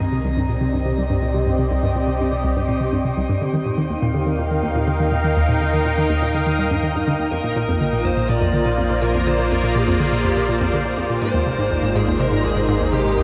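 A sweeping, airy sawtooth pad sits up front with chorused sustained chords over a bouncy, detuned square-wave pluck riff soaked in tape echo and cassette grit and a round sine sub bass, and a smooth, dark overdriven lead guitar joins them with a tape-echoed melody at 7.3 seconds in this mysterious, expansive excerpt of sequencer-driven ambient space music in C minor at 123 BPM, bathed in a shimmering reverb.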